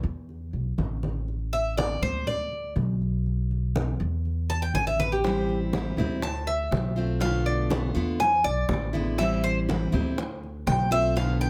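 A bright, metallic Cuban tres takes the lead with picked double-string arpeggios from 1.5 s in this nostalgic, warm Cuban son and guajira excerpt in A minor at 121 BPM, set over a woody, thumpy pizzicato upright bass and distant, thick-skinned low congas, while a full-bodied picked steel-string acoustic guitar with audible finger squeak and round, hard-hand bongos join at 5.2 s in a dry, closely miked recording.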